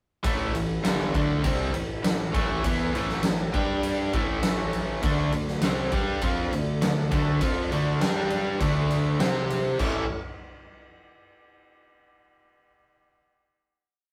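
A rough rehearsal-room recording wrapped in a wet studio reverb gives this short classic rock piece a live, boisterous feel. At 101 BPM in a straight 4/4, it struts with confident swagger. A huge arena drum kit sits up front with a fat snare, punchy kick, crash and ride cymbals, laying down a big rock groove in a natural, roomy acoustic sound. A bright cranked stack guitar drives the power-chord riff, joined by a second overdriven electric guitar that sits compressed in the background, while a fuzz-soaked picked bass pumps driving eighth notes that double the guitar riff. Very quietly underneath, a piping, scooped tonewheel organ holds chords with swells and changing inversions, coloured by key click, chorus vibrato and a slow rotary speaker. The riff moves through A, G5, D5 and C5 before the band lands on a final A chord at 9.8 seconds that rings out to 12.2 seconds.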